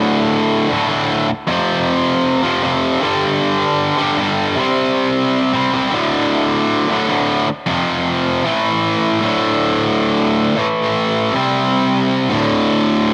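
Punk at 155 BPM in a straight 4/4, this rowdy, upbeat excerpt from a longer piece features a lone tight, bright, picked electric guitar, double-tracked and up front with distortion, cassette tape character and analog delay, driving through power chords from D5 to A5 in a half-time opening before shifting into a second section at 9.2 seconds, all set in a digital ambience with the character of a home cassette recording.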